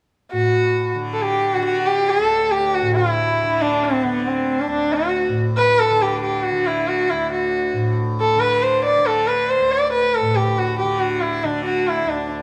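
Set in a straight 4/4 at 138 BPM, this brief Indian classical passage in raga khamaj on D feels devotional and radiant, a short cut from a longer performance that runs from 0.3 to about 12.4 seconds. A single bowed sarangi carries the melody up front, its rich, focused tone moving between B3 and D5 with light vibrato and gliding portamento while its sympathetic strings ring along. Underneath, a softly plucked tanpura holds a drone from D2 to D3, sitting lower in the mix with a bright, buzzing shimmer. Both instruments sound through the same moderate, large studio reverb, captured as a live group playing together in one room. The result is an intimate yet spacious sound, with the gliding sarangi floating over the steady, glowing drone.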